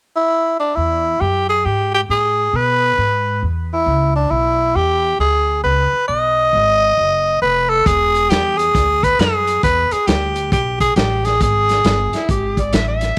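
A loping swung shuffle in 4/4 sets the pace for this laid-back, gritty electric blues excerpt, which moves from an E7 chord to B and back to E7. A growling tenor saxophone carries the melody from 0.2 s, sitting up front with a raspy, bright tone, a soft attack and a jazz-style solo voice. Underneath, an upright bass plucks a woody, dark pizzicato line on steel strings. A vintage drum kit joins at 7.9 s with hi-hat, a punchy kick and a medium-tuned snare, its sound muffled and lo-fi with a rolled-off top, as though recorded in a small room. Near the close, at 12.2 s, an amplified, overdriven harmonica steps forward as a second solo voice, adding tongue slaps, scooped notes and light vibrato, while a light studio reverb surrounds the whole band.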